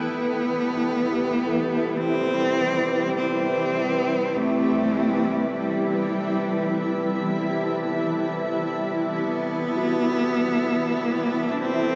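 This serene ambient excerpt opens with a clear, focused bowed cello carrying the melody up front, over a cloudy, full-bodied granular pad holding sustained chords and a reedy, nasal harmonium drone breathing in the background. The piece moves at a slow 50 BPM in 4/4 with a straight feel, in C lydian, tuned to A4 = 437 Hz. A mellow tine electric piano enters at 0.8 seconds with clean, direct arpeggios set back in the mix, and at 1.6 seconds an airy, wind-like tuned noise texture joins behind everything else. The cello sings with vibrato, and both the cello and the electric piano carry a tape echo, while the pad and the wind texture have their own built-in reverb. A synth texture fades in across the clip as the harmony rests on Cmaj7 before shifting to a rootless D7 over C at 9.2 seconds. The whole recording sits in a wet cathedral reverb with a long decay of about seven seconds.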